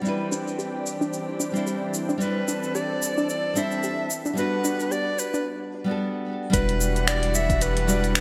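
A relaxed 111 BPM groove in 4/4, swung on the 16ths, opens with a tape-warm deep house kit of cabasa, finger snaps and filtered hi-hat beneath a fingerpicked nylon-string guitar with audible finger squeak and a lush, detuned unison pad, while a soft, round pluck arpeggio in the background carries a filter sweep. This smooth E minor sunset chillout piece turns intimate at 2.2 seconds when a breathy, whispered soprano saxophone takes the melody with vibrato. After a break at 5.5 seconds, a deep electronic kick and a dark, round analog bass join at 6.5 seconds on an Em9 chord, all bathed in a wet, lush hall reverb and bright 1980s-style digital sheen.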